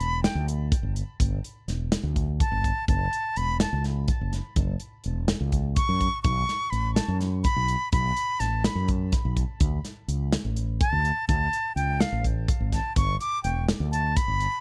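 A reedy, airy concert flute takes a solo from the first second, its soft-attacked vibrato lines touched by tape echo, over a punchy acoustic drum kit of kick, snare and hi-hat and a warm fretless electric bass, all three up front from the start. This tense, intricate progressive instrumental runs in a straight 7/8 at 250 BPM counted in eighths, with chords moving from G5 through F#m7, B5 and D5 before arriving on G at 13.0 seconds. The sound is dry and close, and the passage is cut from a longer piece.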